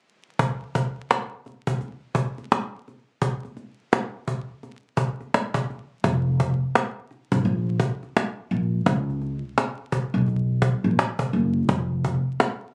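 Boom-bap hip-hop at 85 BPM with a swung 16th-note feel, this moody, gritty piece opens at 0.4 seconds with a woody, close and dry cajon struck with hard hands and faint snares, joined at 6.0 seconds by a dark, up-front pizzicato upright bass on steel strings, all heard through a phone-in-the-room recording with club reverb, vinyl crackle and compression.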